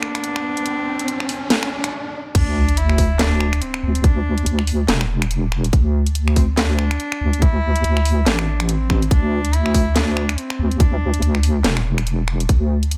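Light reverb and digital ambience frame this heavy, brooding deep dubstep fragment, cut from a longer piece and set in a swung, half-time feel. A rich, reedy cello with a gut-string tone carries the bowed melody through dub echo until 11.4 seconds, over an up-front, tape-toned garage kit of crash, hi-hat, finger snaps, handclaps and a cracking snare, while an electronic riser builds, stops at 1.9 seconds, and gives way to a sub drop impact. A deep, dark, detuned wobble bass with chorus and a tight electronic kick enter at 2.3 seconds, just ahead of the drop at 2.4 seconds.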